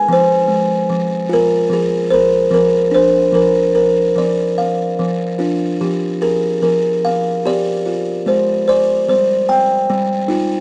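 A buzzing kalimba plays alone throughout this tender, innocent children's lullaby fragment, its woody, hollow-box tone and soft fingertip plucks ringing up front across a span from F3 to G5. The piece sways gently in 3/4 with a loose, rubato feel, moving through Fm, Bb, Fmadd9 and Eb. Light reverb and a boxy small-room character give it the dry, close sound of a 1970s-style studio recording.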